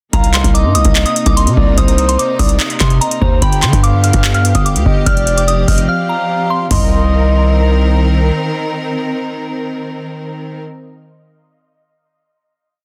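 A bouncy half-time trap beat from a booming analog drum machine, with a deep kick, metallic sixteenth-note hi-hats, handclaps and toms, drives this dark, brooding hip hop piece, while a distorted, saturated 808-style bass sits up front with long sub notes that follow the kick and slide in pitch. Above them a soft FM synth bell loops a mellow melody, and a breathy, flute-like synth lead adds a sparse counter-melody, both repeated like sampled loops, over a clear symphonic string section holding bowed chords with light vibrato. After a brief break at 5.9 seconds, the strings sustain a final chord until 10.6 seconds, joined by the bell and lead until 7.9 seconds and the bass until 8.3 seconds, all within a dense, heavily limited, dry mix.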